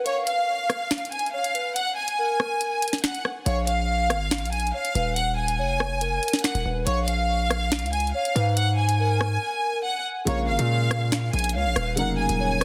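Tense and cold, this half-time drill excerpt at 141 BPM in Bb phrygian sets a lush, vibrato-rich violin section on the melody over sharp-snared drill drums with bright hats, while a hollow, woody synth lead carries a second line through chorus, phaser and tape echo, a heavy distorted 808 bass enters at 3.5 seconds after an opening break, and a dark, mellow baby grand piano joins at 10.3 seconds in a dense, heavily limited mix.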